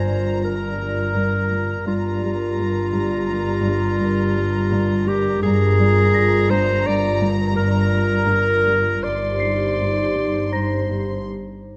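Cinematic and tense, this mysterious 5/4 fragment sets a veiled, con sordino violin section melody high above an up-front, clear clarinet second line, with a warbling, lo-fi tape-like pad holding detuned chords through chorus and its own reverb, dark muted studio cello and double bass sections anchoring a low G, a very quiet chamber cello section riff, and a delicate, bell-like celesta in the background, all moving from Gm7 to Cm/G at 9.0 seconds before a brief break at 11.3 seconds.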